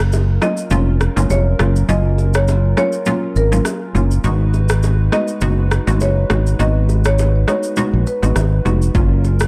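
A lightly swung sixteenth-note afrobeats groove rides on an electronic drum kit with a deep kick, rim clicks and shaker, while very quiet, vintage-sounding bongos and congas add acoustic texture and a punchy fingered electric bass sits up front. A bouncy, detuned square-wave pluck and a soft, flute-like pad, both treated with chorus, outline the F#maj7 and G#m7 chords, and a woody marimba carries the melody from 0.4 s. The production is dry, dark and warm, and the excerpt's mood is sunny and romantic.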